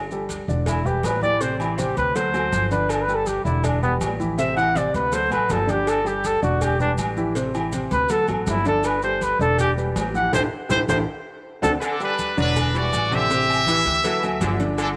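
A light reverb and small-room ambience frame this sunny, festive salsa cut, taken from a longer piece and moving at a brisk 162 BPM in G major. A woody, growly pizzicato upright bass and a polished upright piano carry the cycling Gsus2, Em7, Am7 and D7 changes, while a percussion bed of close, hard-handed congas, a round low cowbell, grainy saturated maracas, and ringing agogo bells and timbales set further back keeps the groove bubbling. Up front, a dark, roomy trumpet with light vibrato takes a solo from 0.7 seconds, and a drum fill with a band accent marks the turn near 10.3 seconds. At 11.8 seconds a brilliant, tight trumpet section takes over the melody, backed by a punchy, vintage-toned trombone section playing a second line in the background.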